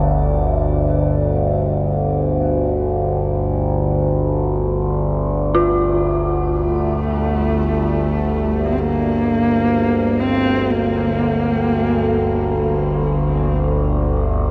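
Dark and unsettling, this ambient drone piece, cut from a longer work, drifts in free time inside a huge, wet reverb with a long decay. Up front sits a low, resonant drone that blends sawtooth and sine with ring modulation, its overtones constantly moving as it sustains on a slow attack and long release, thickened by chorus and its own reverb. Above it, an eerie, inharmonic FM synth bell plays detuned arpeggios with quick, decaying strikes through chorus, shimmer reverb and tape echo. Meanwhile a quartz singing bowl, struck with a wooden striker, rings very quietly in the background, pure and meditative with slow beating. At 6.6 seconds the harmony settles onto a minor chord and a single bowed horsehead fiddle takes the melody up front, husky and expressive, its vibrato and portamento carried by shimmer reverb and tape echo. The fiddle stops at 12.7 seconds, leaving the drone alone until the end of the cut.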